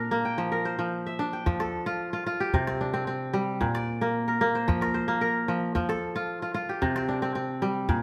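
A wet stone room reverb surrounds this live, single-room recording, a short excerpt cut from a longer piece of West African traditional string and xylophone music. The kora sits up front, ringing and crisp, its fingerpicked acoustic arpeggios spanning Bb2 to G5 in F major at a straight 112 BPM in 4/4. It opens alone on a Bb chord before a small, close and dry calabash enters at 1.5 seconds to add percussion beneath it. From there the harmony cycles through F, C5 and Bb, then returns to F and C5. Both parts play on to 8.0 seconds, and the mood stays joyful and warm throughout.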